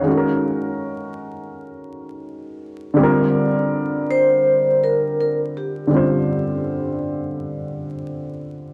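A lightly swung 16th-note groove at 82 BPM carries this hazy, melancholic hip hop fragment in C minor, where a dark, woody upright piano with audible action noise and a slightly detuned, cassette-tape vintage character plays accompaniment over Ebm7 and Csus2 throughout, while a soft-mallet vibraphone with medium motor vibrato rings out a brief metallic melody from 4.1 to 7.0 seconds, both held up front in a moderate plate reverb alongside a bed of vinyl crackle.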